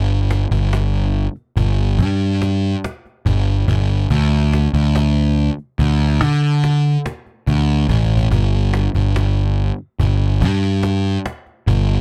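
In a straight-feel 5/4, this playful, bright math rock and midwest emo fragment puts a fuzzy, overdriven picked electric bass up front, direct and amped, while a woody cajon with faint snares sits softly in the background, playing a brief fill at 7.9 seconds, all in a rough home demo mix with studio reverb.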